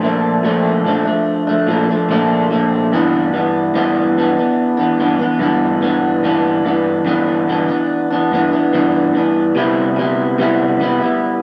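A twangy, slightly broken-up electric guitar played through a small old amp carries this nostalgic, sunny indie pop fragment alone from 0.0 to 11.4 seconds, its picked notes sitting up front in a lush chorus with a warbly pitch drift and a wet studio reverb as it moves at 72 BPM in 4/4 through Bbmaj7, G6 and Cmaj7 in G major.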